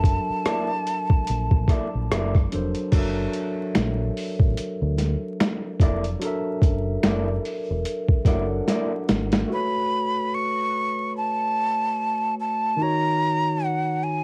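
A lo-fi cassette home recording with vinyl crackle and light reverb frames this relaxed, smooth neo-soul R&B excerpt at 73 BPM with a swung 16th feel, where a gritty, pitched-down boom bap drum kit with thumpy kick and finger snaps sits up front until a fill ends at 9.5 seconds, a dark, round dub bass holds the low end, a barky, lightly overdriven tine electric piano with phaser accompanies throughout, a slightly broken-up guitar through a small old amp adds a spring-reverbed second line, and a breathy metal jazz flute with vibrato and a soft attack carries the melody at the start and again from 9.5 seconds over chords moving from F#7alt to A69 and D#m7.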